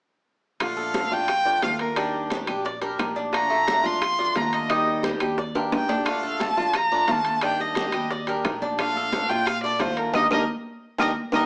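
A straight 4/4 pulse at 176 BPM drives this sunny, relaxed fragment of Cuban son and guajira in Bb major. It is cut from a longer piece and sways between Bbmaj7 and Ebmaj7. Up front, a single bowed violin carries the melody between Bb4 and C6, with a soft attack, vibrato and portamento. Beneath it, a picked swing-style acoustic guitar sounds boxy, with audible finger squeak. From 0.8 s a mellow Cuban tres adds metallic arpeggios on double strings, some of them octave-doubled. A pizzicato upright bass on gut strings gives a dark, thumpy foundation. In the background, ringing metal-shell timbales, woody claves, round low-tuned bongos and high-tuned congas with a thin, bright skin fill out the percussion. The congas sit distant, as if in a large room. Drum fills arrive at 5.6 s and 10.5 s, and a band accent marks the closing moments. Moderate studio reverb and a small-speaker sound frame the recording.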